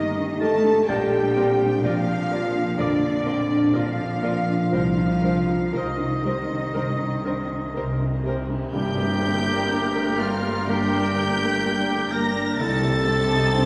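Steeped in a lush concert-hall reverb, this excerpt from a bittersweet, sorrowful film score moves at a slow, rubato 61 BPM in 4/4, settling into G minor at 8.7 s, where the band lands an accent. A rich violin section carries the expressive, vibrato-laden melody over a clearer, more distant second violin line, a smooth solo oboe, a bright clarinet, an airy flute that drops out at 8.4 s, and a mellow, close-miked French horn section holding chords. A felt-muted upright piano adds soft, intimate accompaniment alongside a chamber viola section, while warm cellos and double basses anchor the bass, and a very quiet cymbal swell and tam-tam shimmer in from 4.7 s as the harmony moves from Eb/G through Bb and Cm7 to Gmadd9 and Cm.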